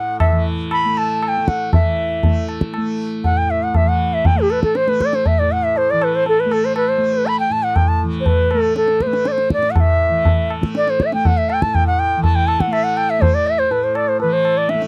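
A bright, reedy bansuri leads this Hindustani classical excerpt, its pure bamboo tone close-miked and up front, carrying a tongued, vibrato-laden melody in raga kafi on A that reaches from just above G4 up to B5. Beneath it, a softly plucked tanpura hums a buzzing, shimmering drone between A2 and A3, sitting well back in the blend. Low-tuned tabla join at 0.2 seconds, their strokes acoustic with a short ring, close and dry. The mood is longing and meditative, set in 4/4 with a straight feel around 120 BPM, and the tempo gradually speeds up across the roughly 15 seconds. The sound is intimate and close, in the manner of a 1970s studio recording, with little reverb, and the passage is cut from a longer piece.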